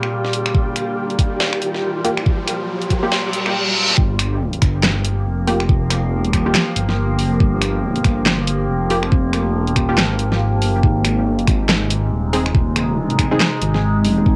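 Deep dubstep at 140 BPM in a half-time 4/4 feel with swung sixteenths, cavernous and meditative in mood, set in G phrygian and taken from a longer piece. It opens with a resonant drone of sustained chords whose overtones sweep and shift, treated with chorus, reverb and phaser, over a faint, grainy, flickering texture in the background that drops out at 3.5 seconds. A knocking electronic kick and a layered kit of snaps, handclaps, bright hats and a huge snare sit up front, while a muted, filtered dub chord stab with a short plucked decay, chorus and dub echo enters at 2.0 seconds under a filter sweep. A riser and reverse cymbal build toward the drop at 4.0 seconds, where a dark, detuned saw bass arrives, deep and rumbling with a beating unison tone. The harmony rests on Gm7 before moving to Ab near the end, and the whole piece carries the tape-softened, lightly reverberant character of a home cassette recording.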